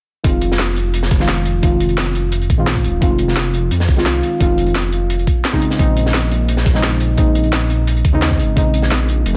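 Liquid drum and bass with a lush, dreamy mood, this short excerpt cut from a longer piece moves in a straight 4/4 over two chords, Fm7 and then Bbm11 from 5.6 seconds. A deep, mellow chord stab sits up front with a soft, full-bodied, slightly nasal, decaying pluck, colored by chorus and a digital delay. Beneath it a dark detuned saw bass rumbles with a beating unison tone and a sustained, fast-attack body, also placed up front. The rhythm is built from layers: a gritty, thumpy electronic kick that stops at 8.6 seconds, a produced drum and bass kit with a cracking snare and crisp hats re-recorded in a small room, and a quieter crunchy breakbeat kit whose saturated, high-tuned snare and hats have a rolled-off top and high-pass filtering. Light reverb and small room ambience surround the parts, and the master is dense and heavily limited.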